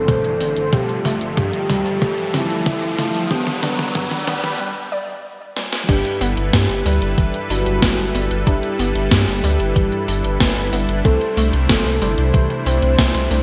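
Nostalgic and uplifting, this synthwave excerpt at 93 BPM moves from G mixolydian to G major at 5.9 s. Throughout, a dark, round octave-layered synth lead with vibrato sings over a smooth detuned supersaw and deep analog bass that both pump with the sidechain, a warbling lo-fi pluck tracing arpeggios through digital delay, brassy synth stabs, a riser that ends at 4.6 s before a brief break, a thumpy overdriven kick, and an up-front gated 80s drum machine with crash, hi-hat, toms and a gated-reverb snare, all set in a lush hall with bright 1980s-style digital sheen.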